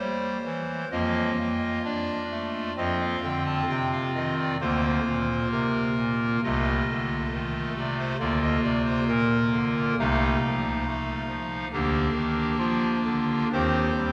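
Serene and reverent, this short classical passage is a chorale-style piece for solo pipe organ in Bb major, moving at a slow 67 BPM in 4/4 with uneven, rubato timing. The organ speaks through a clarinet reed stop with a baroque voicing, giving a hollow tone and a touch of chiff at the start of each note, and it stays up front in the texture while spanning C2 to A5. The harmony settles into a steady alternation of Bb/D and F7/C before closing on Cm/Eb at 13.5 seconds. A long cathedral reverb with a 6.5-second decay surrounds the sound, and the listener seems placed further back in the room. Lasting 14.1 seconds, the passage is cut from a longer piece.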